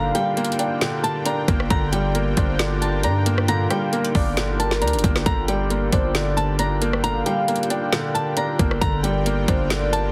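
A melancholic half-time trap excerpt opens with a dark, fingerpicked flamenco guitar melody carrying tape echo, sounding together with a velvety, detuned synth lead with chorus, vibrato and echo, a felt-muted upright piano whose intimate action noise sits up front, a smooth sawtooth pad with chorus in the background, and a punchy, sine-based 808 bass with a noise layer. From 0.1 seconds a trap kit with a hard-clipped kick, woody snare, metallic hats and rim clicks hits over the bass. The mix has light reverb and a heavily compressed, radio-like sound.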